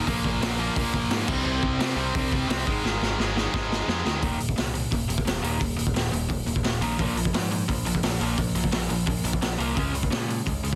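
A dense, heavily limited and nearly dry mix opens this rowdy, upbeat punk rock excerpt at 173 BPM in Eb major, driven by a raw garage drum kit with a boomy kick, high-tuned snare and gritty, saturated small-room sound. Up front, a dark, compressed overdriven electric guitar picks out the riff through power chords from Bb5 to Ab5 and on to Eb5 and Db5, backed by a punchy, direct picked electric bass. A bright, tight distorted second guitar sits in the background until 4.2 seconds, just as a drum fill from 2.8 seconds launches the next section.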